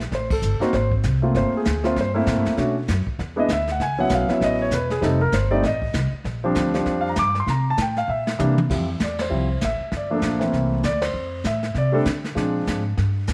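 A moderate echo-chamber reverb gives this smoky, late-night jazz piano trio excerpt at a swinging 196 BPM its studio sheen, with an up-front concert grand of deep, natural tone carrying the melody over a woody, thumpy pizzicato upright bass and a dark, smooth brushed drum kit, whose fill at 8.1 s leads into a new section at 8.7 s as the harmony travels from Am7 to Fmaj9 and on to Bb7.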